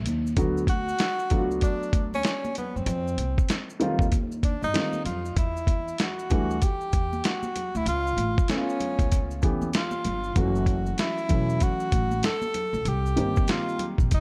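Opening with a woody pizzicato upright bass at 0.0 seconds, joined at 0.1 seconds by a gritty, pitched-down boom bap drum kit with a thumpy kick and background congas and maracas, then by a dark, mellow grand piano at 0.4 seconds, this relaxed, cool jazz-hop excerpt at 96 BPM in D major swings over chords from D6 through Em9 and C#7alt to Cm7 while a breathy tenor saxophone with light vibrato, scooped notes and slapback echo carries the solo melody from 0.7 seconds, all in a small room with a dark, warm production.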